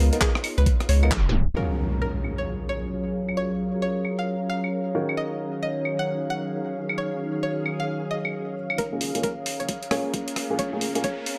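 A silky string machine, a thick saturated sub bass and an intimate baby grand piano, its stabs filter-swept and dub-echoed, open this bouncy, soulful two-step UK garage excerpt in Eb minor at 133 BPM, joined by a warbling lo-fi pad, a twangy resonator pluck melody, a gritty swung breakbeat kit of claves, handclaps, hi-hat and rim click, and a knocking overdriven kick, until a tape stop at 1.1 seconds gives way to an electronic impact and a stretch led by the string machine's filter sweep, after which the kick returns at 8.8 seconds and the sub bass at 9.0 seconds for a build-up capped by an electronic riser.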